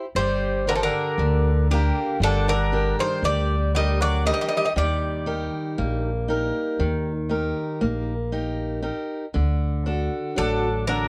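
A bright, metallic Greek bouzouki carries the melody up front, its picked double strings ringing with some octave-doubled courses in a high register. This is a reflective, melancholic Greek folk excerpt for bouzouki band, moving in 9/8 at 118 beats per minute with a straight feel. A picked steel-string parlour guitar with fresh strings opens the recording at 0.0 seconds and stays forward in the mix as accompaniment. A second bouzouki plays a lower supporting line, and a woody pizzicato upright bass anchors the bottom. The harmony rests on G minor, moves to E-flat at 4.8 seconds, and reaches D as a new section begins at 9.4 seconds. Light reverb and the worn, warbling pitch drift of old cassette tape give the recording a faded, nostalgic cast.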